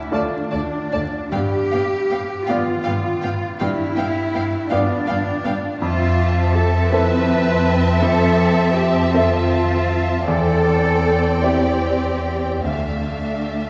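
Up front, a rich, focused cello section with vibrato anchors this longing, bittersweet cinematic film score, moving in a rubato 6/8 at 48-55 BPM over a progression from Dm through G7 and Fmaj7 to Cadd9/E. A smooth, close violin section carries the lush melody as a more distant, expressive violin section sings a second line, while a background viola section adds portamento and a bowed double bass section gives a smooth, even foundation. A brilliant baby grand piano accompanies in the background throughout the 13.7-second excerpt, all set in a wet scoring-stage reverb heard from further back in the room with a vinyl crackle.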